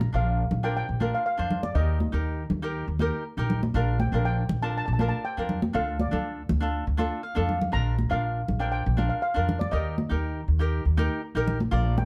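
A woody, thumpy upright bass sits up front in this sunny, bouncy calypso excerpt, its pizzicato gut strings anchoring the low end throughout. Above it, a mellow lead steel pan carries the melody with a shimmering, metallic tone softened by rubber sticks. An acoustic cavaquinho supplies crisp, picked accompaniment and adds a short fill at 7.0 seconds. High-tuned congas, struck with hard hands, ring out close and dry in a straight 4/4 feel, with a brief drum fill at 7.4 seconds. The harmony moves through Bb, Eb, Bb6 and Dm before returning to Bb and Eb, all set in a dark, warm production with light reverb.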